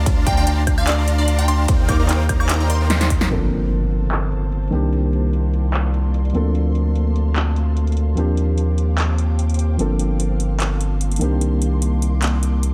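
This future bass excerpt opens mid-drop with a huge detuned supersaw riff, a crystalline pluck melody and a saturated sub bass pumping under punchy electronic drums, then at 3.3 seconds a very quiet impact ushers in a bittersweet, lush passage where a felt-muted upright piano and an ethereal pad carry the chords over the deep sub while the metallic hats and snare turn hazy under a filter sweep.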